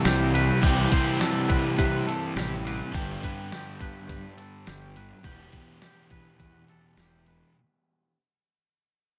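A detuned 8-bit drum machine sits up front in this brooding, hazy shoegaze and dream pop rock clip at 104 BPM in E minor, its sampler-style thumpy kick, medium-tuned snare and hi-hat re-recorded in a large room. A crunchy overdriven guitar riff with reverse reverb and a dark, thick fuzz guitar riff with subtle chorus ride over an overdriven fuzz fingered bass, while a clean, twangy electric guitar plays fingered arpeggios up high through lush chorus and slapback echo. Under light reverb, the chords move from C to G to Em as the passage fades out across its 7.6 seconds.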